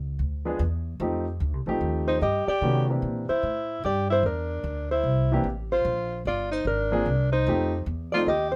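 Playful and relaxed, this short excerpt of small-group jazz swings at 148 BPM in 4/4, sitting in F mixolydian and moving through a diminished chord into a run of ninth chords. The upright bass starts at the very top, plucked with a woody, steel-string tone and set up front in the mix. A baby grand piano joins at 0.5 seconds to supply the accompaniment with a natural sound and short sustain. From 2.1 seconds a clean, dark hollow-body electric guitar carries the melody with fingered notes, while a breathy tenor saxophone enters at the same moment with a mellow, smooth second line touched by light vibrato. A light reverb sits over the whole group.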